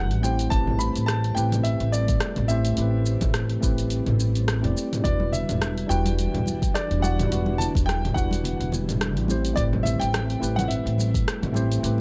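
A relaxed 106 BPM groove in 4/4 swings its sixteenths gently, built on a deep, tape-warmed electronic kick from 0.5 s and a produced deep house kit of hi-hat, rim click, shaker and toms, with bright, hard-handed congas joining in the background at 5.2 s. Up front, a woody pizzicato upright bass sits under Am9 and Em9 chords, while a worn, slightly out-of-tune tine electric piano accompanies and a silky, warbling string machine hovers very quietly beneath. An intimate concert grand with audible action noise carries the high melody, both pianos trailing tape echo, in this smooth sunset chillout excerpt cut from a longer piece.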